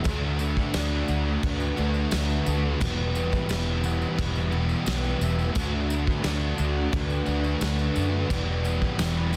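A straight 4/4 pulse at 87 BPM carries this brooding, melancholic slice of shoegaze and dream pop rock, cut from a longer piece. A loose indie drum kit in a small room enters at 0.1 s with a tight kick, medium-tuned snare and crash cymbal, its rolled-off top lending a warm tone, while a close, jingly tambourine sits in the background. The vintage muted electric bass, fingered and foam-muted, joins at the same moment and sits up front with a dark, round, amped tone. A crunchy overdriven guitar plays a riff in the foreground, bathed in reverse reverb, as a thick fuzz guitar plays a riff further back through distortion and ensemble chorus. Behind them a picked twelve-string acoustic guitar plays bright, boxy, octave-doubled arpeggios, shimmering with subtle chorus and slapback echo over chords that alternate between D6 and Em, all inside studio reverb and a dense, heavily limited modern master, with the drums dropping out at 9.1 s.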